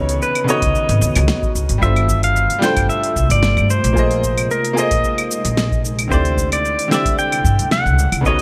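Sunset chillout at 112 BPM with a relaxed, wistful swing, where an up-front pedal steel guitar carries the melody in clean, compressed slide lines with volume swells and delay over clear, short-sustain baby grand piano with tape echo, an ethereal pad drifting in the background through chorus and phaser, a woody, thumpy pizzicato upright bass, and a smooth R&B kit of fat snare, hi-hat, shaker and claves joined by a deep analog-style electronic kick from 0.6 s, all moving through suspended ninth chords.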